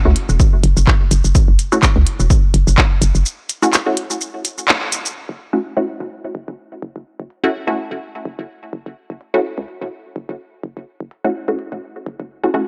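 A hollow, knocking FM bass anchors this quirky, hypnotic minimal techno excerpt, its bouncy, fast-attack notes sitting up front with tube saturation, a high-pass filter and sidechain pumping. Moving at 126 BPM in 4/4 with a 56% swing on the sixteenths, the piece rests on an F#m7 chord in F# minor, tuned to A4 = 439 Hz. A filtered dub chord stab adds muted, detuned, wave-folded plucks treated with phaser and tape echo, and from 5.2 seconds onward a filter sweep runs across it. A clicky minimal drum kit of handclaps, hi-hat and shaker, with low-pass filtering on its percussion, snare and hats, plays throughout, while a punchy analog kick drives things only until 2.9 seconds. A break follows from 3.3 to 5.2 seconds, marked by a band accent at 4.7 seconds, all captured as a dry, gritty hardware recording on cassette tape with light reverb.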